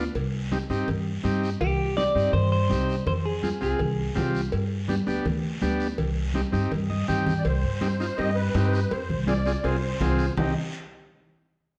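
This cumbia fragment opens with a vintage, clean combo organ and a thumpy, woody upright bass played pizzicato, both up front, at a danceable 164 BPM in C harmonic minor. Guiro, cowbell and timbales, and congas join within the first second: the guiro raspy and distant, the cowbell and timbales ringing in the background, and the congas bright and close under soft hands. A twangy, picked clean electric guitar carries the melody from 1.6 to 4.3 seconds, dressed in spring reverb and tape echo. A short organ fill and a drum fill lead into a new section at 7.4 seconds, where a shimmering musette accordion enters with a reedy second line. The chords move between Cm, Fm and G, and the dark, warm production sits in a wet large-studio reverb that gives the passionate groove its depth.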